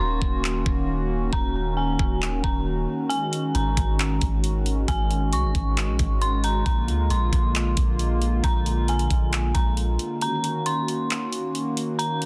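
Ethereal and melancholic, this short excerpt of atmospheric cloud-rap in Eb dorian moves at 135 BPM with a half-time feel, pairing an eerie, warbling FM synth bell melody (treated with chorus, low-pass filter and delay) with a hollow, flute-like pad whose sustained chords pump against the beat, a deep, round 808-style bass that stops at 10.0 seconds, and an up-front trap kit of knocking kick, metallic hi-hats and handclaps, all set in a dry, dense, heavily limited mix over Ebm7, Ab7sus4 and Bb7 chords, with the kick briefly muted from 3.1 to 3.5 seconds.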